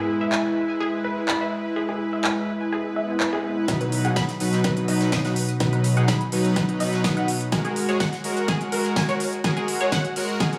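A soft, smooth supersaw opens this uplifting, hopeful progressive house excerpt at 125 BPM in B major with up-front stabs, joined by lush, detuned unison pluck arpeggios under a filter sweep and a pop drum kit with fat snare, crisp hats and handclaps, both synths pumping with sidechain and tape echo, until a background swell at 2.9 seconds leads at 3.7 seconds into a build-up and drum fill where a punchy, overdriven electronic kick and a brushed jazz kit join in the background, the chords moving from E to B to F#add9 in a small, moderately reverberant room.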